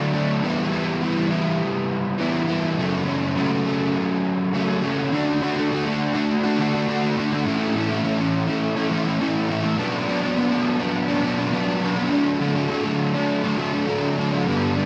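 A straight 4/4 pulse carries this short rock fragment, cut from a longer piece, with a blissful yet wistful mood. A lone overdriven semi-hollow electric guitar plays throughout, picked and double-tracked, sitting up front with a hollow-body glow and the shimmer of analog chorus. Its range spans F#2 to F#4. The harmony opens on Em and F#m, then shifts to D at 5.1 seconds, passing through A and Bm before returning to D at 12.1 seconds. A wet plate reverb with a long tail soaks the mix, lending the sound a dreamy, floating quality.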